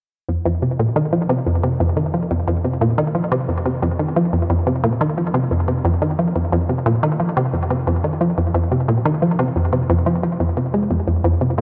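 Ambient and mysterious, this expansive fragment from a longer piece features a lone resonant blip pluck, juicy and squelchy with detuned square and sawtooth tones, fast attack and short decay, sitting up front with chorus and delay inside a huge, wet reverb as it plays from 0.3 to 11.6 seconds.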